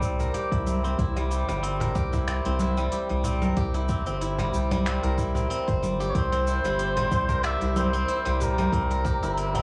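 Silvery, ringing steel-string zither arpeggios open this meditative organic downtempo piece at 93 BPM over a C7 chord, alongside a deep, round analog bass with sidechain pumping, a soft electronic kick and a produced kit of congas, finger snaps, crisp hi-hat and shaker, while a very quiet, snappy cajon enters at 0.2 seconds. At 6.1 seconds a veiled, cup-muted trumpet takes a jazz-style solo melody with gentle vibrato, its vintage tone colored by cassette tape and analog delay. The zither also carries analog delay and a low-pass filter, and a moderate spring reverb plus the home cassette recording lend the whole cut a warm, intimate feel.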